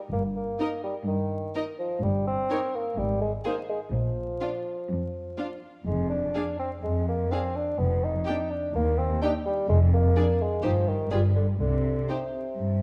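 A straight 4/4 pulse at 125 BPM carries this mischievous, quirky cinematic cue in Eb major, where a mellow, distant bassoon and an up-front, intimate cello section with vibrato begin at 0.1 s over a bowed double bass section, joined at 0.6 s by a dark, floating viola section, a close violin second line and a pure violin melody set in the background, the strings all bowed sul tasto with soft attacks, inside a moderate scoring-stage reverb touched with vinyl crackle in a piece cut from a longer work.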